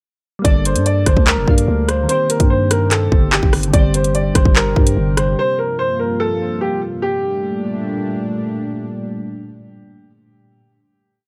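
An electronic drill drum kit sits up front, with a hard-clipped kick, metallic hats skipping through fast hi-hat rolls, handclaps and rim clicks driving a half-time feel at 146 BPM in G minor. Beneath it, a growling, buzzy 808-style bass holds long sub-bass notes that follow the kick, complete with pitch slides. A woody upright piano carries the looping melody like a sampled phrase, softened by a low-pass filter and trailed by digital delay. Round, mellow electric-piano-like synth keys hold openly voiced chords in the background with chorus and a filter sweep, while a deep, detuned analog pad sustains moody chords through Gmadd9, Cm7, D7sus4/G and Fsus4/G. The drums, bass and keys drop out around 5.4 seconds, the piano rings on until 8.2 seconds, and the pad's returning Gmadd9 chord hangs alone until 10.6 seconds, closing this ominous, dry-sounding piece.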